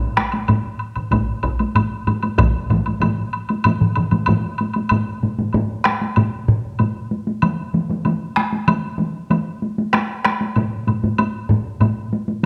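Close, detailed microphones in a moderate recital-hall reverb frame this powerful, ceremonial taiko excerpt of traditional Japanese drumming in a straight 4/4. A compressed, saturated solo taiko struck with hard sticks sits up front alongside a taiko ensemble on heavy sticks with live-room ambience, while a woody, dry woodblock clicks close by. A second ensemble layer bursts in briefly around 1.1 seconds. A vintage, band-limited ensemble layer joins at 2.4 seconds, carries on as the piece moves into a new section near 4.9 seconds, and continues until 9.4 seconds.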